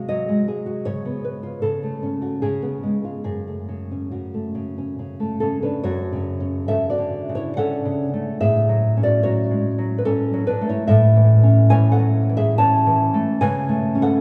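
A dark, thumb-plucked nylon-string guitar sits up front and opens on G#7/B# in this nostalgic romantic excerpt for solo classical guitar in F# minor, moving in a rubato 3/4 at 65-79 BPM through C#7 and F#m before a new section at 5.8 seconds drifts toward A major, all bathed in a long church reverb.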